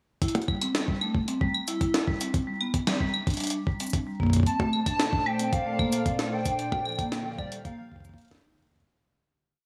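A metallic vibraphone struck with medium hard mallets spins a 12-step arpeggiated loop that drifts against the bar, roughened by vintage 12-bit sampler grit with tape and slapback echo, at the heart of this short, intricate and playful IDM piece. Beneath it, a thumpy, pitched-up electronic kick and a glitched, jungle-style sampled kit of snare, closed hat, high tom, claves and cabasa sit up front in a broken, ever-changing beat, while a warbling, detuned square-and-sawtooth lead enters at 4.5 s with a free, nostalgic melody through chorus and digital delay. A glassy FM pad adds dark, ethereal sustained chords from 4.9 s, and a lush hall reverb lends an arena-sized sound before the fade-out that begins at 5.9 s.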